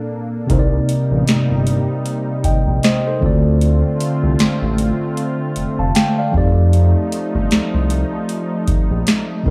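A longing, sensual contemporary R&B excerpt with a lightly swung sixteenth-note feel, opening with mellow tine electric piano and a smooth, detuned analog pad carrying a chorus effect before a gliding synth bass and a booming analog drum machine arrive at 0.5 seconds. The drum machine's deep kick, crisp snare and metallic hats have a large-room character, while the warm, sawtooth-edged bass slides between notes up front. The parts move through Cm7, Dm7 and F13 chords within a small, lightly reverberant space.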